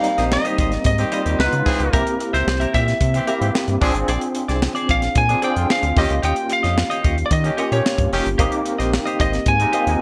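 Polished 1980s jazz-funk pop at 112 BPM in Ab major, urban and glossy, this excerpt sets a slightly broken-up lead guitar melody with tube saturation over a barky, gritty tine electric piano with fast tremolo and ensemble chorus, a clean picked guitar riff with subtle chorus, a crisp fusion kit with a high-tuned snare and punchy kick, a round, deep analog bass entering at 0.2 seconds, and a clear horn section adding a smooth second line from 1.0 seconds, all in light reverb as the chords move from Abmaj7 through Db9, C7, Bb9 and Eb7 back to Abmaj7.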